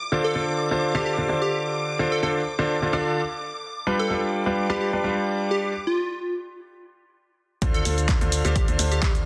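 A dense, heavily limited mix sits in a moderate plate reverb as this soulful, bittersweet piano house excerpt opens with a clear, intimate grand piano riff under a filter sweep, with audible action noise and deep bass, framed by shimmering vintage string-machine violins and a catchy, detuned plucky unison lead carrying the melody through dub echo. After a break at 5.7 seconds, the drop at 7.6 seconds brings in a hollow, organ-like FM bass, a tape-warm electronic kick and a punchy analog drum machine with handclaps, hi-hat and shaker. Sidechain pumping makes the strings, piano and bass breathe around the kick.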